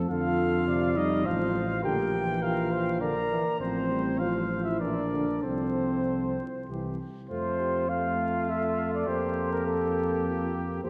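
A rubato 3/4 pulse at 102 BPM carries this heroic, grave classical brass quintet passage in F major, where a dark trumpet with light vibrato sings the melody alongside a clear second trumpet's soft-attacked line, a warm French horn and a distant, roomy trombone in the background supply accompaniment, and a mellow tuba sits up front on the bass, the whole set in a wet church reverb with vinyl crackle.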